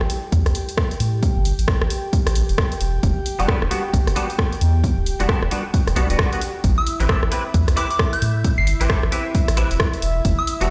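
UK garage in a bouncy, moody two-step groove with a swung feel, cut from a longer piece: a smooth, detuned sawtooth pad holds sustained chords with chorus and sidechain pumping over a thick, up-front saturated sub bass, while an overdriven analog drum machine's hi-hat and rim click sit beside a dry, punchy electronic kick. A twangy, clean picked electric guitar adds compressed stabs with ensemble chorus and delay from 3.4 seconds, and at 6.8 seconds a soft FM synth bell brings a gentle, decaying melody coloured by phaser, delay and vintage 12-bit sampler grit. The mix sounds as if played on a big sound system in a bare stone room, with light reverb and a digital ambience.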